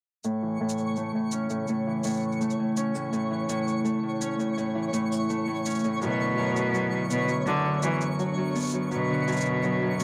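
A straight 4/4 pulse at 83 BPM, kept by an electronic, produced cabasa, carries this hopeful, playful folktronica piece in A major. Up front, a fingerpicked Celtic harp rings out in bright arpeggios through a low-pass filter sweep and tape echo. Alongside it, from 0.8 seconds, a warbling, nostalgic pad holds lo-fi sustained chords with chorus and reverb. Higher up, a twinkling granular texture adds sparkling octave-up shimmer with its own reverb. At 6.0 seconds a bowed cello enters on the bass line, biting and intense with light vibrato, as the harmony moves from A to B minor. The dry, close 1970s-style studio sound carries only light reverb.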